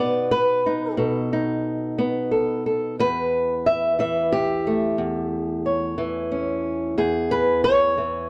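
Acoustic country blues in a gritty, rollicking 12/8 at 60 BPM, this short fragment features a single fingerpicked, ladder-braced acoustic guitar playing solo and up front from 0.0 to 8.3 s, its woody, boxy tone and old strings spanning E2 to E5. The guitar moves from B7 to A7 at 3.0 s and settles on E at 7.0 s, set in a dark, warm production with light reverb.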